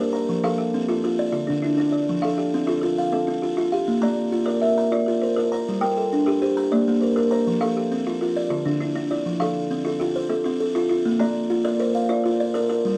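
Hypnotic and gently glowing, this fragment of southern African traditional music in a steady 12/8 spins an mbira-style interlocking cycle of arpeggios, played by two kalimbas together for its full 13 seconds. The buzzing kalimba sits slightly louder, its fingertip plucks on a solid board sounding woody, mellow and airy with a soft buzzing ring, while the second kalimba, plucked with a thumbnail over a hollow box, has a vintage, band-limited tone. Both are up front in a dark production with moderate studio reverb, circling through F, Dm, Bb and Gm before a closing passage from 9.3 seconds that moves between F and Bb.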